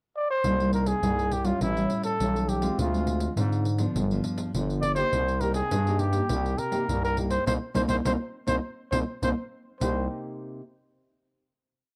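A breathy, whispered trumpet opens on a pickup at 0.2 seconds with a mellow, intimate jazz-style solo melody built from motif-based sentence phrases, colored by light vibrato, soft attacks, scooped notes and plate reverb. At 0.4 seconds a jingly, close and dry pandeiro played with soft hands enters together with a growling, thick FM bass with a fast attack playing a samba bass figure up front, and a full-bodied, fingerpicked nylon-string guitar with thumb bass, syncopated plucked chords and audible finger squeak, setting a straight 4/4 samba-and-choro groove at 103 BPM beneath the trumpet. The bittersweet yet lively piece in C minor moves from Cm7 through A7, Dm7b5 and G7, has a band accent from 7.5 seconds, and closes on a final chord at 9.8 seconds, all with a cassette-recorded home feel in a small room.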